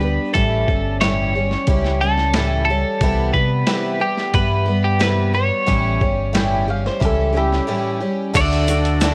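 A twelve-string electric guitar opens this hopeful, open-road folk rock and heartland rock excerpt, carrying a clean, twangy melody with subtle chorus and analog delay over a shimmering, octave-doubled acoustic twelve-string and a dark, round fingered bass, with a gritty, pitched-down sampler-style drum kit with a thumpy kick and high-tuned snare joining at 0.4 seconds in a straight 90 BPM. A woody mandolin adds a delayed second line at 6.3 seconds, and after a short break a reedy, sweet accordion and a grainy tube shaker in the background arrive at 8.3 seconds as the chords move from A7 and Cmaj7 to D. The whole recording sits in light studio reverb with the worn, warbling pitch drift of old cassette tape.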